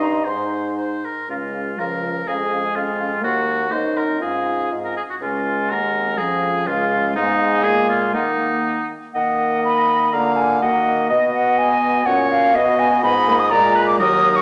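A hollow, pure-toned silver flute with vibrato carries the melody close up in this lively, spirited classical-period wind quintet movement at 124 BPM in 2/4 with a rubato feel, the warm oboe sitting up front on a second line while a mellow French horn and a soft-attacked, distant clarinet accompany above the bassoon's lightly vibrant bass, set in a wet recital hall reverb as the music turns from Db major to Eb minor at 7.2 s in this excerpt from a longer piece.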